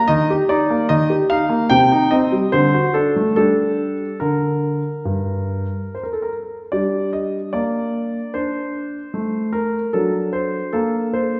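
Elegant and dramatic, this short passage from a classical-period piano sonatina sets a solo grand piano in a minor key, its beat falling unevenly across the bar. The piano sounds polished and present, ranging from G2 to G5 as it moves through Eb, Cm and D7 to Gm before a second section begins at 6.7 seconds and turns toward D/F#. A wet recital-hall reverb places the listener further back in the room, giving the recording a soft, dulled top end.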